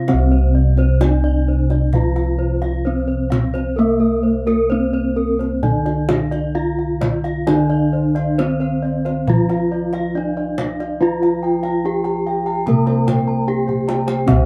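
Javanese gamelan in a shimmering, ceremonial mood, this brief passage cut from a longer piece moves at a steady, unhurried pace in a straight four-beat metre. Three bronze metallophones, each struck with a wooden mallet, share the texture: one carries the melody with paired tuning that produces shimmering beats, another supplies a lower accompaniment with a ringing, vintage edge, and a higher, airy one spins arpeggios above them. Bossed gongs hold the bass, round and up front, their beating tones anchoring the ensemble, while the kendang adds tight, acoustic drum patterns from the outset. At 7.7 seconds a second set of bossed gongs joins with bright, airy arpeggios high in the range. Near the close the kendang plays a drum fill from 13.7 seconds. The group sounds as though it is playing live together in a small room with moderate reverb, and the older, band-limited character of several parts gives the recording a slightly aged color.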